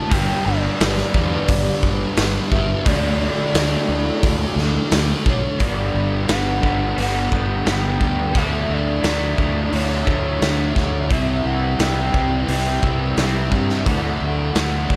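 An up-front, gritty garage drum kit in a bright, pumping stone room joins a growly, overdriven fingered bass at 0.1 s to drive this blissful, wistful shoegaze and dream pop rock excerpt at 87 BPM, under a thick fuzz guitar riff with analog chorus and a lo-fi overdriven garage guitar riff with reverse reverb, while a breathy, dark sine lead with phaser, vibrato and analog delay floats over a hollow, flute-like pad as the chords shift from G and D to Gmaj7, Dmaj9, Cmaj7 and Dadd9 from 5.6 s.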